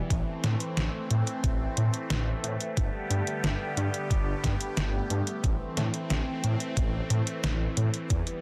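A straight 4/4 pulse at 90 BPM drives this nostalgic, nocturnal synthwave excerpt in A minor, where a thumpy, overdriven electronic kick and a detuned 8-bit drum machine's up-front hi-hat and medium-tuned snare play alongside a thick, saturated detuned saw bass and a swirling, bright phased analog pad whose slow-attack chords pump against the sidechain, moving from Am to Gadd9 at 2.8 seconds and back to Am at 5.4 seconds in light digital ambience and a dense, heavily limited master.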